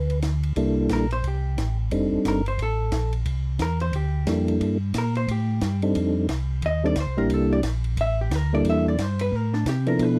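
A soft, flute-like tonewheel organ with percussive second-harmonic attack carries the melody up front in this swinging, bluesy soul jazz organ trio excerpt at 178 BPM in C mixolydian, its slow rotary speaker and chorus vibrato shared by a round, dark organ bass line. A dark, compressed hollow-body electric guitar joins at 0.9 s with a clean, picked solo, while a dry cocktail kit of punchy kick, high-tuned snare, hi-hat and dark ride cymbal sits low in the mix. The harmony moves from a rootless G to alternating C13 and F13 chords in a close, dry 1970s-style studio sound.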